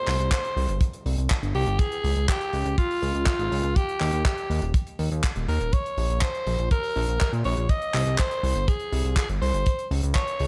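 A raspy, forceful alto saxophone carries the solo melody in this melodramatic, danceable italo disco excerpt at 122 BPM, its gritty tone touched with light vibrato and digital delay. Beneath it, a glossy, detuned synth bass with chorus and a plucked filter sits up front beside a tight, dry kick drum, while an acoustic funk kit adds handclaps and hi-hat through gated reverb. A very quiet electronic downlifter sounds only in the opening 1.8 seconds as the chords move from Gsus4 through Db, Eb, Bbm and Ab in a small room.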